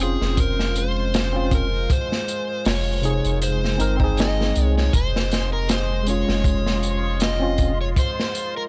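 A crunchy breakbeat drum kit sits up front in this melancholic, hypnotic trip hop excerpt, its tight kick, medium-tuned snare and hi-hat sounding saturated and gritty with a rolled-off top, swinging at 79 BPM in 4/4. Beneath it, a soft dub sub bass gives a deep, round, mellow foundation, while a worn, slightly out-of-tune tine electric piano plays the accompaniment through a combo amp with light overdrive and tremolo. An overdriven slide guitar carries the melody in a dark electric voice, roughened by vintage 12-bit sampler grit and trailed by tape echo. A deep, moody ambient pad holds sustained chords with chorus and reverb, moving through Dbmaj7/F, Bbm7, Ab/F and Fmadd9, returning to Dbmaj7/F before settling on Ab. At 5.3 seconds a bright, flickering grainy texture enters in the background on a high C, adding a shimmering granular layer, all within a small room ambience.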